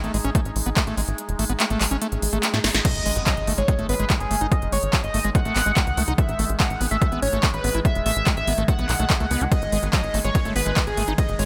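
A straight 4/4 psychedelic trance pulse at 144 BPM in G# phrygian drives this hypnotic, alien passage, with a punchy, up-front electronic kick and a big-room dance kit of crisp hats, snare, handclaps, ride and crash over a tight, dark sequencer bass, while a squelchy, resonant acid bass riff with distortion and delay plays over a background drone of moving overtones with chorus and sidechain pumping. The kick drops out at 1.2 seconds as a very quiet swell and a drum fill build toward the drop at 2.8 seconds, where an impact lands and a screaming, guitar-like distorted lead enters with phaser, chorus and vibrato. A very quiet metallic, wobbling FM bass adds a brief second line at 3.2 seconds, and the mix sits in light reverb.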